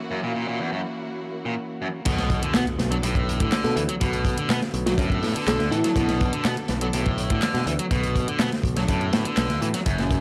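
Breakbeat with a gritty, swaggering strut, opening on a mellow, very quiet tonewheel organ holding sustained chords under lush background string stabs with tape echo, while an up-front overdriven guitar riff with tube saturation drives from the start. At 2.1 seconds the drop lands with a faint electronic impact, a growly picked electric bass, a crunchy, saturated breakbeat kit with dark cymbals and a tight kick, and a layered garage kit adding filtered hi-hats and handclaps. From 3.6 to 6.2 seconds a sparkling, bell-like FM electric piano melody drifts through chorus, phaser, tape echo and an old-record sheen, all captured in a dry, small-room sound.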